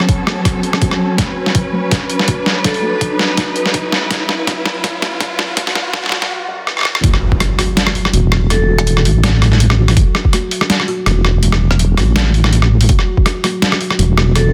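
A half-time drum and bass groove with a light swing sets a heavy, tense mood, as a gritty, overdriven sampler-style kit and a thumpy, pitched-down kick drive a build-up of lush bowed strings with 12-bit grit and sidechain pumping, a soft, muted felt piano arpeggiating with delay in the background, brief ringing vibraphone notes, and a background riser and impact, before the drop at 7.0 seconds brings in a deep, dark, chorused wobble bass up front.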